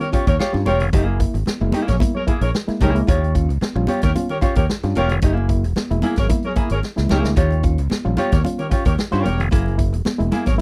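Funk in Eb mixolydian at 112 BPM, this strutting, gritty clip from a longer piece moves in a straight 4/4, alternating between Eb9 and Gb9 chords. A bright, fingered electric bass sits up front with the drum kit, whose boomy kick and medium-tuned snare carry a natural big-room sound, and a drum fill lands at 6.8 seconds. A dark, clean archtop guitar, picked through a wah, fills in the accompaniment while a worn, reedy electric piano with a fast tremolo adds stabs, slightly out of tune through its built-in speakers. A mellow horn section with a soft attack plays a distant, roomy second line in a jazz style. High-tuned congas struck with hard hands play in the background from 0.4 seconds, all within a dry, close 1970s-style studio sound.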